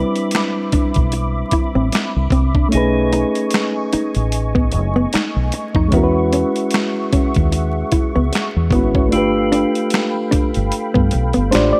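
A gritty, pitched-down boom bap drum kit sits up front with a thumpy kick, medium-tuned snare, hi-hat and finger snaps, entering at 0.2 seconds over a dark, round, foam-muted fingered bass in this relaxed neo-soul R&B excerpt with a gentle 16th-note swing. A reedy, clean electric piano carries the accompaniment through chords moving from Cmaj9 to B13, E69 and G9, while a dark, fingered hollow-body jazz guitar plays a second line. A soft, flute-like tonewheel organ holds sustained chords through a fast rotary speaker and chorus vibrato, all set in light reverb with vinyl crackle.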